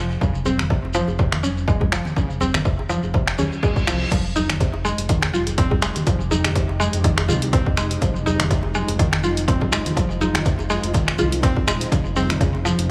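A light small-room ambience frames this hypnotic, spiritual afro house excerpt at 123 BPM in F minor, where a woody, up-front mallet-like synth pluck spins arpeggios through chorus, delay and a filter sweep over a smooth gliding synth bass, a punchy overdriven electronic kick and a layered deep house kit of hi-hat, finger snaps, toms and crash, while bright congas and a grainy shekere sit in the background beside a very quiet, dry, cracking djembe, a reverse cymbal rushes in at 3.4 seconds, and an ethereal, airy pad joins at 4.9 seconds with sustained Fm9 chords.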